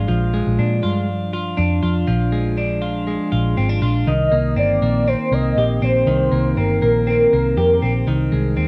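Bittersweet and restless, this cut from a longer jangly indie pop piece in C minor moves at 120 BPM: a bright, twangy twelve-string electric guitar plays picked, compressed arpeggios over a round, foam-muted electric bass, both up front in a small room with moderate reverb, while a velvety, detuned synth lead with chorus, vibrato and analog delay carries the melody from 4.1 to 7.9 seconds, cassette tape colouring the guitar and synth as the chords move from Bb7 to Cm7 to Ab.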